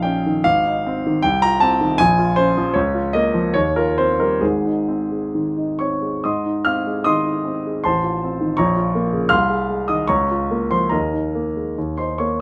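A polished grand piano, close and up front, carries this hopeful romantic character piece alone, moving in a flexible rubato 2/4 at 65-83 BPM in Ab major across a span from Ab1 to F6. The opening phrase settles from Ab through F7/C and Bbm to an Eb69 before returning home, and a second phrase begins at 6.2 seconds, leaning on Bbm and Ab/C before hanging on Ebsus4 and Eb5 as the fragment breaks off at 12.4 seconds. Light reverb gives the present, warm tone a gentle sense of space.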